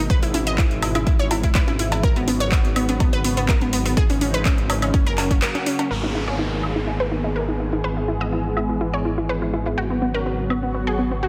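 A smooth, chorused analog pad, a bright, up-front ring-modulated pluck playing arpeggios through chorus and digital delay, and a deep, rumbling detuned saw bass pump with sidechain from the opening of this driving, expansive progressive house excerpt in G# minor at 124 BPM, joined by an overdriven deep house kit of handclaps, metallic hats and woodblock, a deep, up-front electronic kick that drops out after a band accent at 5.4 seconds, and reverb-touched congas and cowbell in the background, before a downlifter arrives at 5.9 seconds as the chords land on G#madd9.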